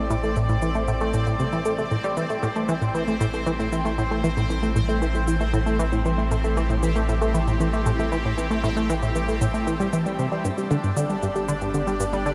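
A tight, detuned sawtooth sequencer riff with a plucky filter, chorus and tape echo drives this hypnotic, cosmic stretch of ambient space music at 116 BPM in A minor, over a round, deep square-and-sine analog bass, a bubbling, resonant stepped-filter texture, a swirling, phased vintage string machine fading in behind, and tape-warm electronic blips and cabasa also fading in, all bathed in a shimmering reverb as the harmony moves from Am7 to G at 10.4 seconds.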